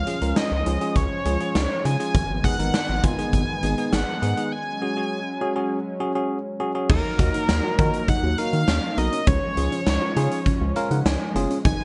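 Synth-pop with a melancholic, nocturnal mood, moving at 101 BPM in a straight 4/4 and cut from a longer piece that drifts from Db through Abm and Gbsus2 to Ebm and back to Db. A bold, retro octave-doubled lead carries the melody with chorus and vibrato, while a smooth, warbling analog pad holds sustained chords in the background beneath it. A round, deep analog bass anchors the low end, and a bell-like tine electric piano sits up front with clean accompaniment, adding a fill near the close at 10.5 seconds. The huge arena drum kit sits up front in the mix, its punchy kick, medium-tuned snare, hi-hat and crash treated with gated reverb, with a break arriving at 4.5 seconds. From 6.9 seconds a soft, gentle pluck joins far back with arpeggios colored by chorus and tape echo, all within a light reverb and a softened top end.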